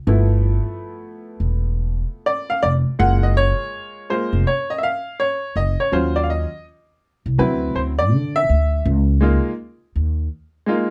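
A bright, brilliant upright piano with short sustain opens this relaxed, swung hip hop fragment at 82 BPM, carrying a solo through the first 8.8 seconds over woody pizzicato upright bass on steel strings, both up front in a dark, warm production with light reverb, moving through G13, Gbmaj7, Ebm7 and D9 before settling on Db69 as the bass drops out at 10.3 seconds.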